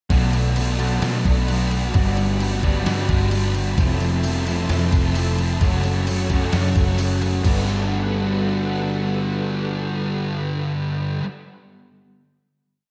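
Dreamy and blissful, this short, complete piece of shoegaze-flavoured dream-pop rock moves at 131 BPM in a straight 4/4, set in G lydian over a progression of Bm7, Gmaj7, Fmaj7 and F#m before settling on a held Gmaj7. Up front, a thick, warm fuzz guitar strums distorted chords coloured by analog chorus and whammy-bar dips, while a second electric guitar through a small old amp adds dark, slightly broken-up ringing chords, fingered and smeared with reverse reverb. Underneath, a vintage muted picked bass plays a round, foam-muted dotted figure, and a string machine voicing violas lays a soft-attack sawtooth pad with a vintage sheen and ensemble chorus. A gated 80s digital drum machine drives a half big groove with a thumpy kick, crash cymbal and an overdriven gated-reverb snare, re-recorded in a small room. A bright, jingly tambourine sits in the background from 3.8 seconds. At 7.4 seconds the final chord begins, the drums stop at 7.6 seconds and the tambourine just after, leaving the guitars, bass and strings to ring out in a light digital ambience.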